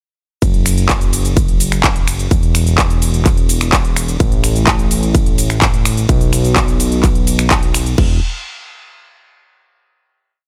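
Emotional and powerful, this short festival progressive house piece at 127 BPM drives a straight 4/4 drop from 0.4 s with a punchy, layered four-on-the-floor electronic kick, a crisp, up-front big-room drum kit of closed and half-open hi-hats, handclaps, finger snaps, cabasa, ride and crash, and a fat, warm, detuned sawtooth analog bass pumping under sidechain in the E1 to B1 register. Everything is kept dry, with the kick and kit tape-warm, until a final note rings out from 8.0 s.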